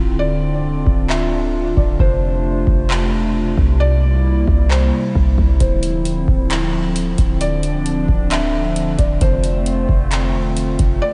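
A hollow, flute-like pad with chorus and sidechain pumping opens this ethereal, spacious cloud-rap excerpt alongside a warm, sine-based 808-style bass with a fast attack. A felt-muted upright piano enters at 0.2 s with a dark, intimate melody drifting through diffuse ambient delay. From 0.9 s a booming analog drum machine, re-recorded in a large room, adds a half-time hip hop groove of deep kick, metallic hi-hats and handclaps over Dm9, F6 and C7 chords, all bathed in light reverb.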